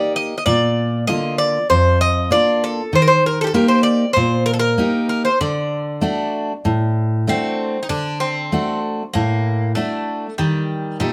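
A straight 4/4 pulse at 97 BPM carries this brooding, bittersweet Greek folk fragment in D phrygian dominant, where a metallic, double-strung bouzouki with some octave-doubled courses picks the melody up front over a full-bodied, fingerpicked jumbo steel-string guitar whose finger squeaks come through as it moves from Bb to Eb to D before the music shifts into a new section at 7.9 s, all set in a small, wet room.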